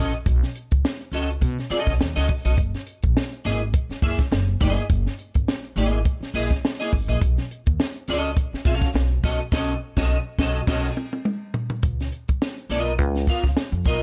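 A clean, picked electric guitar and a pizzicato upright bass open this energetic funk excerpt together, with a compact cocktail drum kit joining a moment later at 104 BPM in 4/4, its sixteenths carrying a light swing. The guitar sits up front with a bright, twangy tone coloured by analog chorus and plate reverb, comping over rich extended chords that move from Cb9 to Gb13 and back. Beneath it, the steel-strung upright bass sounds woody and dark. The dry drum kit is also up front, pairing a punchy kick and high-tuned snare with dark cymbals, hi-hat and toms. The band hits a shared accent from 9.5 seconds, a drum fill enters at 10.7 seconds, and at 11.8 seconds the harmony shifts to Db13 as a new section begins, all within a small room ambience.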